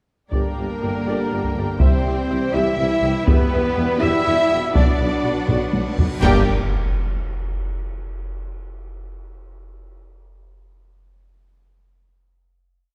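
Heavy-stick taiko strokes sit up front in this short, heroic and dark cinematic orchestral cue, moving at 81 BPM in a straight 6/8 through a brooding Gm, C, Em and Bm progression. The theme is carried by lush violin sections doubling the tune at the octave, with a rich cello section joining on the melody, while woody violas drive a rhythmic ostinato and a bowed double bass section pushes a bass ostinato of its own. Mellow, vintage-toned trumpets and a tight horn section double the tune, very quiet trombones add slow swelling chords, a focused string section holds sustained harmony, and a roomy tuba doubles the bass line. Dark cymbal swells, clashes and concert bass drum strokes arrive at 3.3 seconds, close and dry, and a drum fill at 5.5 seconds leads into a band accent on the final Gm chord at 6.2 seconds. A huge, bright reverse cymbal swells into that closing chord alongside low impacts, all set in a moderate scoring-stage reverb with a dark, warm production.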